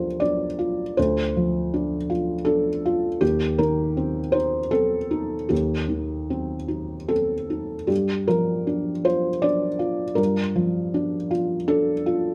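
Melancholic and reflective, this short excerpt of neoclassical minimalist piano features a solo felt-muted upright piano, intimate and mellow with audible action noise, drifting in a rubato 3/4 through Dm7 and Eb6 before its opening phrase returns over Gm7 at 7.9 seconds, set up front in light reverb.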